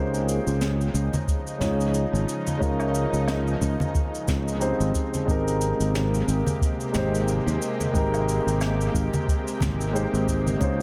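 Sunset chillout at 90 BPM in 4/4, with a gentle 16th-note swing and a sunny, smooth mood, this short passage is cut from a longer piece and tuned slightly sharp to A4 = 442 Hz. A dark, mellow grand piano carries the accompaniment with long sustain and a dub echo, resting on a shimmering, ethereal pad of detuned, warbling chords with slow attack, chorus and its own reverb. Up front, a growly, bright fretless electric bass holds the low end from the start. Cabasa, a high-tuned snare played with brushes and woodblock come in at 0.1 s through analog delay, low-tuned congas with hard hands sit in the background from 1.1 s, and an overdriven, deep electronic kick joins at 1.3 s. The harmony moves from Dbmaj9 to Abmaj9, and the whole mix is echo-heavy, bathed in a moderate spring reverb.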